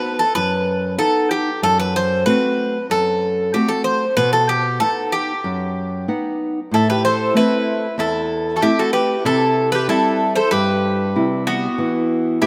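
This brooding excerpt of Greek folk music opens with a bright, metallic bouzouki carrying the melody up front, its picked double strings with some octave-doubled courses, over a fingerpicked nylon-string guitar that supplies a small, close accompaniment. The tempo sits at a moderate 94 BPM in a straight 4/4, and the moody harmony moves from B through F#dim and back to B before turning to Am and C and landing on an E5 chord near the end. At 6.7 seconds a mandolin joins with a warm, round second line, its picked double strings sitting lower in the balance than the other two parts. The guitar spans a broad register beneath the bouzouki's narrower melodic range, and the three instruments play until the cut at 12.5 seconds. A moderate plate reverb with a long tail gives the small band a spacious, lingering sound.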